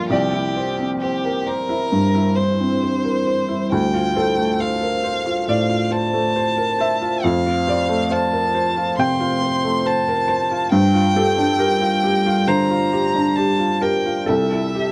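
A rubato 4/4 at 68 BPM gives this short, melancholic neoclassical passage, cut from a longer piece, a slow and longing pulse as a felt-muted upright piano, soft, mellow and intimate, lays down accompaniment up front from the low bass to the upper register. Over it a single bowed violin sings the melody with rich, smooth vibrato, while a deep, dark ambient pad with chorus and its own reverb holds sustained chords in the background. The harmony moves from Cadd9 through Dm7, F and Gm7 before returning to Cadd9 at 14.3 seconds, all set in light reverb.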